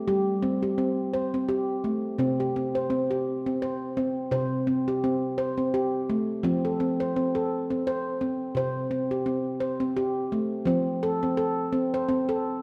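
A ringing, bright nitrided-steel handpan plays solo and up front with sharp finger strokes in this hypnotic, meditative world excerpt, moving at 85 BPM in a lightly swung 3/4 across chords from Gsus24 to F, bathed in a wet echo-chamber reverb, with a new section arriving at 10.7 seconds.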